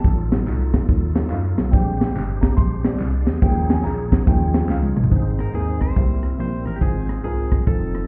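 A dry, tight funk drum kit with a high-tuned snare anchors this jubilant, reverent slice of uptempo swung gospel, joined by a punchy, round FM bass and a warm grand piano that solos from the start until 5.1 seconds, where a drum fill from 4.7 seconds hands off to a new section. A reedy tonewheel organ with key click, fast rotary speaker and chorus vibrato sustains chords in the background beside a very quiet, dark French horn section, while distant tambourine and group handclaps add color in the opening stretch and a clean, twangy electric guitar picks out a melody from 5.4 seconds. The whole mix sounds muffled, as if heard through a wall of a club.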